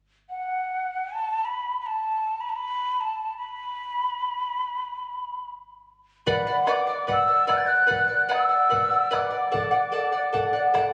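Captured on a phone in a reverberant recital hall amid club ambience, with compression and a faint mains hum, this melancholic, wistful Andean folk passage in free time and B minor pentatonic, cut from a longer piece, opens at 0.3 seconds with a breathy, hollow cane quena carrying the melody up front with vibrato and tongued notes, before a bright, shimmering fingerpicked charango and a deep, dark bombo join at 6.3 seconds as the harmony moves from Bm to D.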